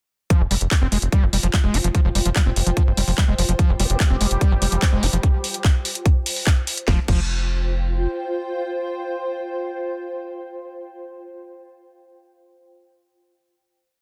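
A straight four-on-the-floor electronic kick at 146 BPM in 4/4 drives this short, alien psychedelic trance piece, joined by a garage drum kit of cracking snare, handclaps, hats and crash, a punchy, rolling sixteenth-note sequencer bass and a screaming, squelchy acid line with accents and slides, soaked in distortion, chorus, tape echo and sidechain pumping, while a blurred granular cloud pad enters at 1.0 s and carries into a final chord at 6.9 s, a bubbling stepped-filter texture surfaces at 3.6 s and a very quiet, nasal vowel-sweep wobble bass adds short phrases, the whole set in a dense, heavily limited modern master with light digital ambience.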